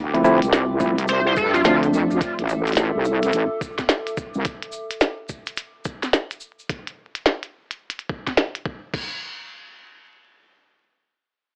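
A heavy, detuned wobble bass with overdrive and a warbling, lo-fi tape-like pad with sidechain pumping open this gritty, funky glitch hop excerpt at 107 BPM with a swung 16th feel, joined at 0.1 s by worn, slightly out-of-tune electric piano stabs with tape echo over Dm9 and a glitchy drum kit of tiny snare and clicky hats, then a grainy shaker in the background, a thumpy compressed kick from 0.8 s and a brief tearing oscillator-sync lead at 1.1 s, the dry hardware sound carrying vinyl crackle and an AM radio tone as the harmony moves to C6.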